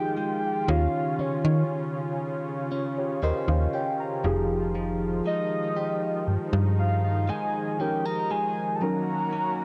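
R&B excerpt in F minor at a slow 59 BPM with a late-night, longing mood, where a round, mellow octave-layered synth lead with chorus and vibrato sings the melody over muted, felt-like synth keys, a smooth detuned analog pad shimmering with tremolo, and bright, compressed arpeggios from a clean direct-recorded electric guitar, while a snappy, metallic FM bass sits up front from 0.7 to 7.3 seconds, all moving through Fm9, Eb13 and Gb6 chords in light digital reverb with the character of a cassette home recording.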